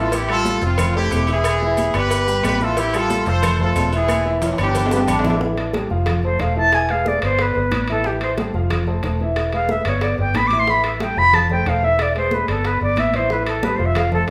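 Fiery and danceable, this salsa excerpt at 182 BPM in A minor opens with a tight, bright horn section over a dark, long-sustaining baby grand piano and a round, punchy, foam-muted electric bass, while ringing agogo bells and timbales, high-tuned congas, cowbell and bongos, grainy maracas and very quiet woody claves sit beneath; a brilliant trombone section with analog delay cuts in briefly near 4.9 seconds, during a drum fill, and in the solo section that begins at 5.4 seconds a reedy, pure silver concert flute enters up front at about 6.2 seconds, the band set in a large studio reverb that suggests everyone playing live in one room.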